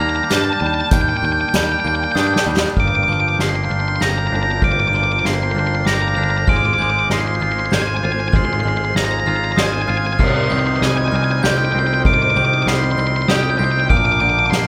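Moving in a straight 3/4 at 97 BPM, this brooding, cinematic post-rock excerpt in G phrygian opens on Ebmaj7, and after a soft-mallet drum fill from 2.2 to 2.8 seconds it builds through Gm7, Ab6 and Cm toward Bb. A dark, fuzz-distorted lead guitar carries the melody up front alongside a picked electric bass, while a boomy, dark-cymballed drum kit played with soft mallets enters at 0.3 seconds. Behind them, a twangy, clean electric guitar and a sparkling, bell-like glockenspiel spin arpeggios over a reedy, breathing pedal harmonium's sustained chords, all ringing in a moderate recital-hall reverb.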